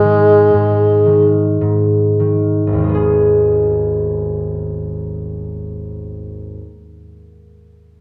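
A dreamy, wistful children's lullaby in G# minor and 3/4, drifting at 48-62 BPM and slowing through its opening 2.8 seconds, cut from a longer piece. A dark, vintage-toned solo bassoon sits up front with light vibrato, singing a brief classical-style melody that ends at 1.6 s, while a ringing, thumb-plucked concert harp carries the accompaniment up to 6.7 s, moving from a G#5 chord to G# minor at 2.8 s. A wet recital hall reverb gives the whole short passage a spacious glow.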